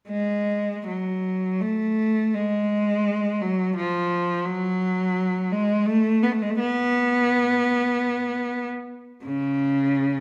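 A single bowed cello sounds up front from 0.1 s to 10.2 s, its rich, intense tone with vibrato and a smooth top carrying a meditative, yearning classical fragment in F# minor and 3/4, played with free, expressive rubato between 46 and 89 BPM in the low-to-middle register and set in a moderate recital-hall reverb.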